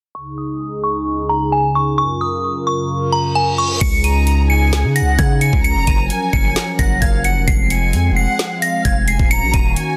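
A delicate, tinkling FM synth bell carries a bright melody over a hollow, flute-like pad of sustained Dbsus2 and Gbmaj7 chords, both chorused and filtered, as a filter sweep and a reverse cymbal build the opening of this dreamy, triumphant half-time trap excerpt in Db major at 131 BPM. At 3.8 seconds an electronic trap kit with knocking kick, woody snare and metallic hats lands alongside a deep, sine-toned 808 bass, and at 4.0 seconds a dark, lush studio violin section adds an expressive bowed second line with vibrato, portamento and tape echo, as the harmony moves through Gbmaj7, Fm and Ebm7. The mix is dry, with the drums, bass and bell up front and a dense, heavily limited modern master, and the piece is cut from a longer work.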